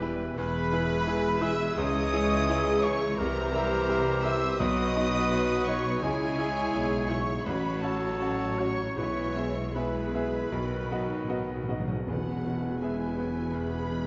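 A bright, brilliant grand piano carries the melody in this passionate, lyrical excerpt of a romantic movement for piano and orchestra, moving with a rubato feel while a lush violin section also sings the melody high above and a second, background violin section, airy flute, oboe and very quiet clarinet weave secondary lines. Mellow bassoon, expressive viola with portamento, dark distant horns, a clear trumpet sounding stabs until 11.7 seconds, and the cellos and double basses fill out the harmony and bass beneath. Hard-mallet timpani enter at 4.6 seconds and deliver a fill before a full-band accent at 12.1 seconds, where a dark tam-tam joins as the chords resolve home, all set in a moderate scoring-stage reverb.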